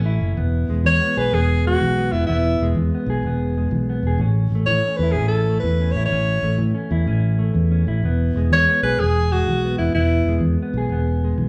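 Carefree and joyful, this short cut from a longer highlife guitar band piece moves at 125 BPM in a straight 12/8 in E major, with a mellow, clean fingered electric guitar and a round, punchy fingered electric bass carrying the E, A, E changes while a bright alto saxophone enters at 0.9 seconds for a jazz-style solo full of scooped notes and light vibrato, the whole band captured playing live in one large studio room with moderate reverb.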